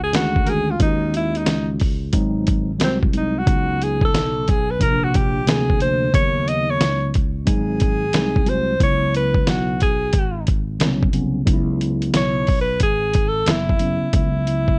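Jazz-hop with a mellow, cool mood at 90 BPM in C# minor, this excerpt rides a swung groove from a dusty, sampler-style drum kit whose thumpy kick, medium-tuned snare and hi-hat sit up front with overdriven 12-bit grit. A breathy alto saxophone solos across the whole passage with light vibrato and a smooth top, over a clean, mellow tine electric piano heard through its built-in speakers and a growly, punchy fretless electric bass. Chords move through C#sus24, G#7, B13 and C#9sus4 before settling on C#m7 at 8.8 seconds, all wrapped in light reverb and a faint mains hum.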